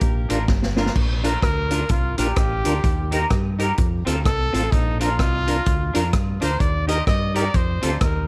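Opening on a very quiet, mellow horn section over round, dark fingered bass and a punchy, up-front vintage drum kit with dark cymbals, this joyful, bouncy ska excerpt at 128 BPM in Bb major swings along as twangy clean electric guitar with lush chorus and delay and a key-clicking tonewheel organ with slow rotary stabs join at 0.3 s, then a drum fill at 0.5 s leads into a breathy, whispered trumpet solo with light vibrato entering at 1.4 s over Bb, Eb and F chords in a small, lightly reverberant room.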